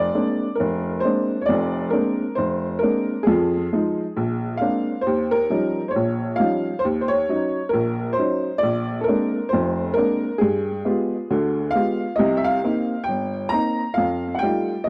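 Swinging and relaxed, this solo jazz piece moves at 135 BPM in 4/4 with a 65% swing on the eighths in Bb mixolydian. A lone upright piano, woody, slightly detuned and boxy, sits up front and spans from low F1 to Bb5, its sound touched by tape echo. The dry, close 1970s-style studio sound frames a short passage cut from a longer piece, where dominant and minor seventh chords such as Bb9, Eb9, Ebm7 and G7b9 cycle through before landing on F9 at 14.0 seconds.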